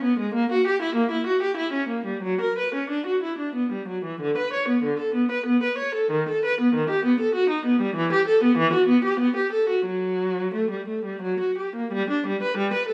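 This is a classical, baroque-style suite movement for unaccompanied viola in B minor, introspective and grave in mood. Set in 3/4 at a flexible 84 to 99 BPM, it moves with a free, rubato feel. A single bowed viola plays alone for the whole 12.9 seconds, ranging from D3 to C#5, with a warm, expressive tone shaped by vibrato and portamento. The instrument sits up front, while a wet stone-room reverb gives a sense of hearing it from further back in the space. The opening passage runs until 11.9 seconds, when a new section begins just before this excerpt from a longer piece breaks off.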